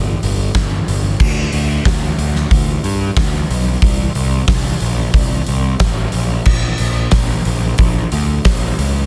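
This is a dark, angsty quiet-loud alternative rock passage at 91 BPM in a straight 4/4, cut from a longer piece and tuned slightly sharp to A4 = 441 Hz. A fuzz-laden picked electric bass carries the low end from the start, sitting between G1 and G2 with a round, overdriven tone that is amped and up front. At 0.2 seconds a huge acoustic arena drum kit joins with bright cymbals, a fat snare, a punchy kick, hi-hat and crash, placed forward with a hall-sized character. The whole passage stays within a single section, and both parts play until just before the cut at 9.1 seconds. The mix is dry, with little reverb, and the dense, heavily limited modern master gives the pairing a crushing, in-your-face weight.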